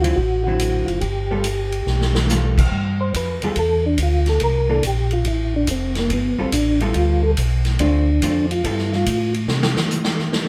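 Recorded live in one room with light reverb, this greasy, bluesy soul jazz organ trio excerpt swings at 142 BPM in G mixolydian: a soft, flute-like tonewheel organ with percussive attack, chorus vibrato and slow rotary speaker carries the melody and takes a solo from 2.7 seconds, a dark, compressed hollow-body electric guitar plays clean accompaniment, a round, mellow second tonewheel organ with its own vibrato and slow rotary sits up front on bass, and a punchy, natural big-band drum kit with kick, snare, hi-hat, ride and crash swings throughout, adding a fill at 1.9 seconds.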